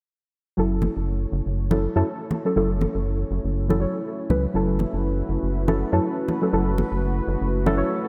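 A moody, hypnotic deep house excerpt in F# minor at 121 BPM, with a 56% swing on the sixteenths, opens at 0.6 s with a detuned, slow-attack sawtooth pad sustaining an F#m7 chord through chorus. Sounding alongside it from that same moment are deep, warbling chord stabs with chorus and delay, and a rubbery, wave-folded square bass sitting up front. Soft-handed, high-tuned congas enter at 0.8 s, close, dry and damped, all framed by a moderate plate reverb and bright 1980s-style digital production.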